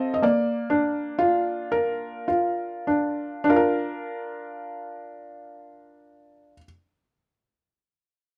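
A rubato lilt in 6/8 gives this short children's lullaby excerpt its gentle, tender sway, easing into a slowdown across the opening 3.5 seconds before a second passage begins. A felt-muted upright piano plays alone from the start until 6.6 seconds, its soft, mellow tone with short sustain and a vintage, intimate character. The piano sits up front under close, detailed microphones with little reverb.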